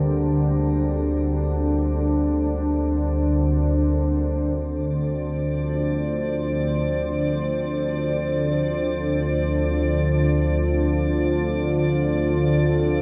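Soaked in a lush hall reverb with a long 2.9-second tail, this dark, ominous ambient drone excerpt in D minor drifts in free time, tuned to A4 = 443 Hz. An up-front, organ-like drone of wave-folded sine tones with ensemble chorus holds the low register while a deep, moody analog pad of detuned sawtooth and sub-octave layers sustains chords with slow attacks and long releases, shifting from Bbadd9/D to Dm at 4.6 seconds. From 5.0 seconds, a quieter, crystalline glass pad with ring modulation and shimmer reverb hovers high above on a single icy D5.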